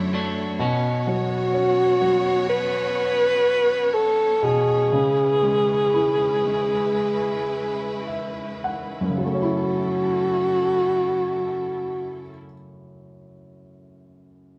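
In a straight 4/4 that slows down between 1.1 and 9.2 seconds, this heartbroken, melancholic pop fragment pairs a polished baby grand piano with a bowed studio string section full of expressive portamento, while a clean, compressed twelve-string electric guitar offers spring-reverbed arpeggios that stop at 1.1 seconds. A dark alto saxophone then carries the jazz-style solo melody up front, with scooped notes and vibrato, and the piano adds a fill just before the music moves into a new section at 9.2 seconds. The band sounds as if it is playing live in one room, with light reverb.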